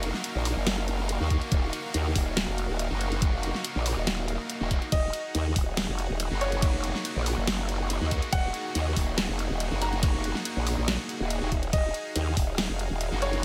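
A growling, saturated wobble bass with chorus and overdrive sits up front in this heavy, menacing dubstep excerpt in Eb minor at 141 BPM with a half-time feel, opening alongside a lush, detuned supersaw pad pumping with sidechain in the background, distorted, double-tracked fuzz guitar stabs with delay, and a dubstep kit of huge snare, crash and hi-hat, before a knocking electronic kick arrives at 1.3 seconds and a smooth, vintage grand piano melody with delay enters at 4.9 seconds, set within a digital ambience.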